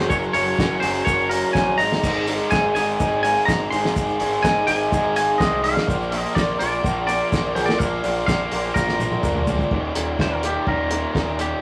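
Indie rock with a jangly, carefree mood, this short cut from a longer piece moves at a brisk, straight four-beat pulse. A bright, twangy electric guitar carries the melody in a clean, compressed tone, while a barky overdriven tine electric piano with phaser adds a gritty second line in the background until about 9.4 seconds. Underneath, two overdriven guitars share the riff: a raw, lo-fi garage guitar pushed forward and a biting one tucked behind it, supported by a growling picked electric bass. A cloth-damped, thuddy drum kit with dark cymbals, a fat snare and a tight kick sits close and dry, joined by a grainy tube shaker in the background, and a drum fill at 8.8 seconds leads into a new section at 9.7 seconds where a clean electric guitar solo enters. The whole has the rough feel of a rehearsal-room recording, with tube saturation and a wet studio reverb.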